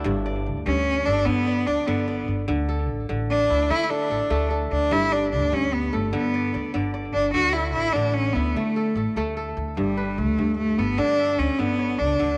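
West African traditional music in a straight 12/8, warm and hypnotic, cut from a longer piece. A bright, ringing fingerpicked kora spins arpeggios touched with tape echo, while a woody, dark pizzicato upright bass holds the low end throughout. A single bowed cello enters at 0.7 seconds, rich and smooth with vibrato, sitting close and up front with its own tape echo as it solos until 9.8 seconds, all within a small room's light reverb.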